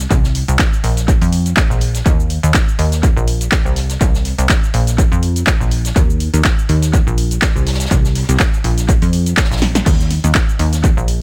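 This piano house excerpt is euphoric and feel-good, running at 123 BPM in 4/4 with a 55% swing on the sixteenths and tuned to A4 = 441 Hz. A plucky analog bass sits up front between Bb1 and F2, its punchy, funky sawtooth and square-wave tone shaped by a fast-attack, decaying filter pluck and a moving notch, with sidechain pumping. An electronic kick drum, analog and tape-warm, re-recorded in a small room, hits hard and forward from 0.1 s until 10.9 s. A punchy analog drum machine supplies cabasa, crash cymbal, handclaps, hi-hat and snare through an analog delay, while a very quiet natural country drum kit adds acoustic hi-hat and a medium-tuned snare. The mix is dry in reverb but heavy with echo, and a drum fill arrives at 9.6 s near the close of this short section cut from a longer piece.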